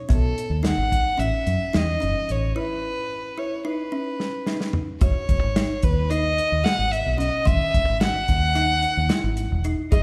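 Bright and intricate, this progressive instrumental band piece moves at 220 BPM in an uneven 9/8, counted in straight eighths, and is cut from a longer work. A single dark, woody violin carries the melody up front with light vibrato and a boxy bowed tone, while a kalimba adds short, hollow arpeggios with a thumbnail pluck in the background. Fingered electric bass, foam-muted and amped, anchors the low end, and a soul drum kit with a tight kick, medium-tuned snare and rolled-off top sits dry and close on hi-hat, snare, kick and toms. The harmony moves from B7 through A6, drops to a break from 2.6 to 5.0 seconds with a drum fill at 4.2, then settles onto Emaj9 at 5.0 seconds as a new section begins. The ensemble sounds as if captured in a church or concert hall, with a moderate reverb of about 2.1 seconds lending the dry drums a spacious halo.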